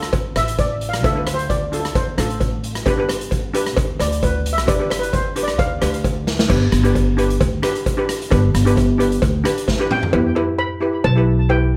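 Festive and carefree, this calypso clip sets a mellow lead steel pan, struck with soft rubber sticks and carried on plate reverb and tape echo, over a bright, airy double-seconds pan played with hard rubber sticks. A woody, thumpy pizzicato upright bass on steel strings, a close cowbell and a boomy, up-front street-band drum kit with dark cymbals and a medium-tuned snare drive the Dm and G changes, with a drum fill at 6.3 s. The lead pan drops out at 5.8 s and returns at 9.9 s, and the kit stops shortly after as the harmony turns to Em.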